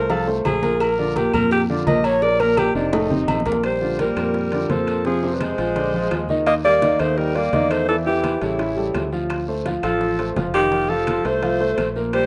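A straight 4/4 Afro-Cuban jazz groove at 170 BPM in Bb major sets a lively, sunny mood in this fragment cut from a longer piece, driven by bright congas, very quiet bongos and cowbell, ringing metal-shell agogo bells and timbales, woody claves and a raspy guiro. An up-front alto saxophone with jazz vibrato carries the melody over a natural-sounding baby grand piano and a dark, round fretless electric bass, and after a drum fill at 2.9 seconds, a breathy tenor saxophone with scooped notes enters as a second line at 3.6 seconds. The rough home-demo mix sits in a lush hall reverb as the harmony moves through chords such as Ebmaj7, A7 and Dm7.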